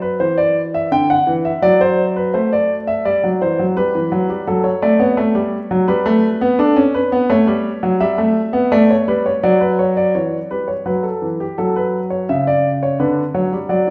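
A steady, straight 4/4 pulse at 84 BPM carries this serious, contemplative baroque-style two-part invention for solo grand piano, cut from a longer piece and tuned to A4 = 441 Hz. The concert grand plays alone from 0.0 to 13.9 s, ranging from C#3 to G5, with an intimate, up-front presence, deep bass, long sustain and audible action noise. The opening passage moves through Dadd9, D7/F#, G, D/F#, Gadd9 and A7 before settling on D, and a second passage begins at 10.1 s with C#dim/E, F#5 and Bm/D. A wet recital hall reverb, with a 1.4 s decay, surrounds the natural piano tone with the ambience of a church or concert hall.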